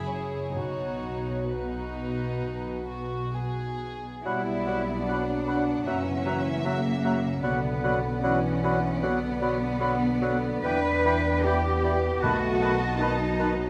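Serene and lyrical, this slow romantic orchestral movement in 4/4 drifts with rubato around 62-78 BPM, opening in B major before turning to B minor at 4.3 s. Sul tasto strings carry it from the start: a dark chamber violin section sings the melody in the background over a warm second violin line, floating violas, a ringing, very quiet harp playing arpeggios, a dark double bass section and a prominent cello section with vibrato. At 4.3 s the winds join, with an airy flute group, a mellow close-miked cor anglais, a punchy vintage clarinet, a clear bassoon and distant, roomy French horns holding sustained chords, while hard-mallet timpani strike a close, dry B2 from 12.2 s, all set in a wet scoring-stage reverb.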